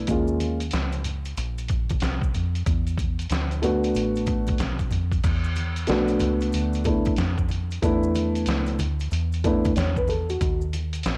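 A dark, woody upright piano with tape coloring opens this nocturnal, cool jazz-hop excerpt at 93 BPM with a swung feel, moving through suspended ninth chords over a round, foam-muted fingered electric bass, while a gritty, pitched-down sampler-style drum kit with a thumpy kick sits up front and dry, ringing maracas and congas stay in the background of a close, home-taped cassette sound.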